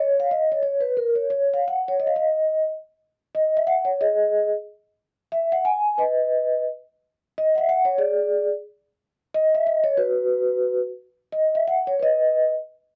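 A whirling, bittersweet musette waltz in 3/4 at 180 BPM with a light swing on the eighths, this fragment of a longer piece features a solo vibraphone played with soft mallets from 0.0 to 12.5 s, its mellow, dark, ringing tone shimmering with fast motor vibrato and a cassette-tape coloring as it sits up front in a dry home recording, moving into a new section at 3.0 s, tuned slightly sharp to A4 = 443 Hz.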